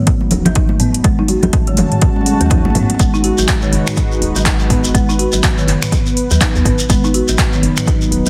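The recording sounds heavily compressed and radio-ready, set in a light studio reverb, with a spiritual, earthy afro house groove at 123 BPM in G# phrygian, swung on the sixteenths. A deep, moody analog pad holds sustained chords throughout, its detuned sawtooth body thickened by chorus and pumping against the kick, while a round, woody FM bass sits dark and soft in the background with the same pumping. A punchy, layered electronic kick sits up front beside an afro-pop kit of finger snaps, handclaps, metallic hats and toms, and ringing, high-tuned congas played with soft hands sit close and dry behind them until 2.9 seconds. A rustic folk marimba with medium mallets spins arpeggios through a delay, its hardwood bars sounding boxy as if in a small room. The opening three seconds are a build-up with a drum fill and filter sweeps on the marimba and pad, then the drop lands at 3.0 seconds, where a grainy, mellow shekere joins as the chords move from G#m7 through F#sus24 back to B.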